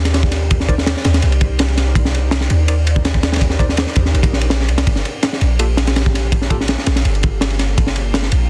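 A crunchy breakbeat kit and a deep, boomy 808-style bass open this dark, atmospheric drum and bass piece in the jungle style. The drums are saturated and gritty, with a punchy kick, a high-tuned snare and dusky ride cymbal sitting up front in a small room. From 0.7 s a worn, slightly out-of-tune tine electric piano adds very quiet stabs through its built-in speakers over a move from Cm9 to Gm9, all within a dense, heavily limited master.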